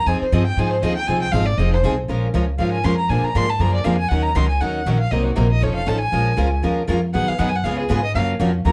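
Jazz manouche acoustic string swing with a swinging, virtuosic mood, heard in a short cut from a longer piece, where a bowed violin solos throughout with vibrato, portamento and a soft, expressive attack, sitting up front. Beneath it, a woody, thumpy pizzicato upright bass on gut strings stands equally forward, while two bright, picked steel-string acoustic guitars, one jumbo and full-bodied and the other an auditorium model, supply the accompaniment from 0.1 seconds. Minor-key seventh chords with altered dominants move through the changes in a moderate studio room with a dark, warm production.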